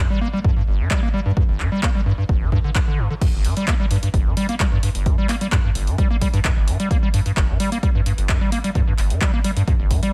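The sound is close and almost free of reverb, a brief slice of a longer acid house track with a driving, trippy mood in a straight four-four. A square-wave acid bass opens the clip from the very start and carries the riff, squelchy and hollow with a resonant filter pluck whose fast attack quickly decays; it sits up front, roughened by overdrive, thickened by a subtle chorus and pumping through sidechain. An electronic kick drum arrives at 0.4 seconds, dry, punchy and overdriven, placed prominently in the mix with a small room ambience. At 0.9 seconds an analog drum machine joins with crash cymbal, handclaps and hi-hat, also overdriven and dry, with the same small room around it but set lower behind the kick and bass. The result is gritty and hypnotic, built on the bass riff's squelchy bite over a relentless electronic pulse.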